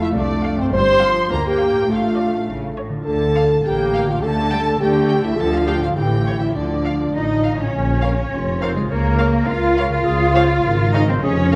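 This short cut from a longer cinematic cue is set in a wet scoring-stage reverb that gives the ensemble a spacious glow. The piece is playful and whimsical in a straight two-beat metre, with a mischievous, quirky mood. Muted, con sordino strings carry most of the texture: a distant, veiled violin section holds the melody, a second violin section with a smooth top plays another line, the violas and lush symphonic cellos fill in beneath, and the double basses anchor the bass with vibrato and a soft attack. A French horn section, the loudest part, sustains warm, tight chords throughout, while a concert harp rings out thumb-plucked arpeggios in the background. The flute section joins at 7.1 seconds with a pure, straight-toned line, and at 7.7 seconds, as the harmony shifts, a solo clarinet adds a mellow second line and a solo tuba deepens the bass.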